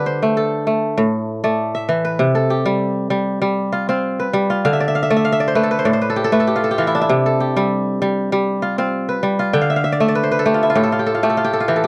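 A dry, close studio sound in a 1970s style puts a lone kora up front, its acoustic strings crisp and ringing with little reverb around them. This short excerpt of West African traditional music, cut from a longer piece, moves at 98 BPM in a straight 4/4 feel in C major, and the mood is hypnotic and warm. The kora plays solo for the full 11.9 seconds, fingerpicked across a range from A2 to G5. A brief opening section moves from D5 to A5, and a second section begins at 2.2 seconds, cycling through harmonies of C5, Dm and A5. Fills from the kora stand out from 4.6 to 7.1 seconds and again from 9.5 seconds, the second running through to the end.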